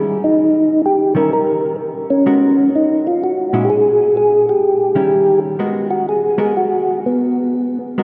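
A dark, fingered hollow-body jazz guitar sets the accompaniment for this smoky, bluesy swing fragment before an up-front, flute-like tonewheel organ with percussive attack, chorus vibrato and a slow rotary speaker carries the melody over changes like D#7b9 and G#m9, stepping out for a solo from 5.6 seconds, all bathed in the long, dusky wash of a cathedral-sized room.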